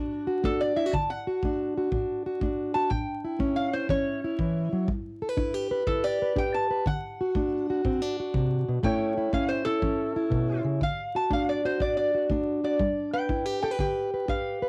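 A lap resonator guitar takes the lead with a metallic, nasal slide voice, played with fingerpicks and a steel bar, soloing up front from the opening through the end at 14.7 seconds. This laid-back, gritty piece of acoustic country blues, cut from a longer performance, moves with a relaxed swing in four. Beneath it, a plugged-in steel-string parlour guitar fingerpicks a boxy accompaniment that is also placed up front. Both guitars carry a cassette-tape colour. A tight kick drum played with brushes sits distant and roomy from 0.4 seconds. The harmony moves through D, A and G across two passes of the same section, and the home-recorded sound has light reverb and a layer of vinyl crackle.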